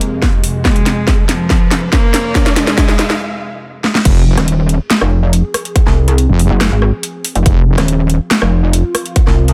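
A heavy, saturated sawtooth wobble bass crashes in at 4.1 seconds, joined at 4.4 seconds by a pulsing, chorused pluck wobble bass, driving the drop of this menacing half-time dubstep piece. Before it, during the build-up, a rich bowed cello with vibrato and portamento plays through a digital delay over a bright, morphing wavetable pad, joined by a background riser and a drum fill that give way to a short break at 3.2 seconds. An overdriven, punchy electronic kick and a kit with a huge snare, metallic hi-hats, rim clicks and crash cymbals sit up front throughout, while the pad pumps underneath with phaser and its own reverb.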